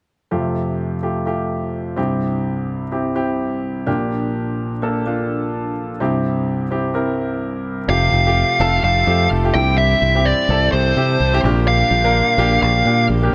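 Pop in F major at 127 BPM with a light sixteenth-note swing, this anthemic cut from a longer piece opens with a clear concert grand piano playing alone, its deep bass and long sustain carrying a Fadd9, C and Gm/Bb progression. At 7.9 seconds a dark, overdriven, picked lead guitar takes the melody up front, joined by a growly, punchy fingered electric bass and a very quiet full pipe organ whose majestic, brilliant mixtures hold sustained chords underneath. A light reverb surrounds the whole.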